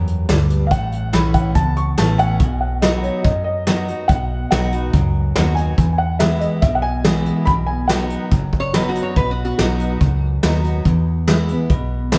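Set back in the room under a moderate plate reverb, this easygoing, down-home honky-tonk and classic country excerpt in B major moves at 142 BPM, with a full-bodied picked dreadnought acoustic guitar up front, a round, foam-muted vintage electric bass, a soft brush kit with a punchy kick, and a jangly, boxy honky-tonk upright tucked in the background beneath a mellow, woody, slightly detuned upright piano melody that runs from 0.7 to 8.9 seconds, overlapping briefly with a nasal, metallic lap resonator slide line that surfaces at 8.6 seconds.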